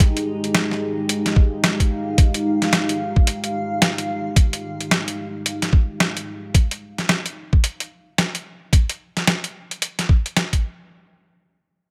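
Gritty and funky, this glitch hop excerpt at 110 BPM in F minor swings its 16ths over a held Fm9 chord, with a thumpy, pitched-down electronic kick and a compressed, sampler-style boom bap kit of hi-hat and medium-tuned snare sitting up front, while a deep, detuned sawtooth analog pad with chorus and a blurred, evolving granular cloud pad with built-in reverb both pump softly beneath until 6.5 seconds, all set in a light digital ambience.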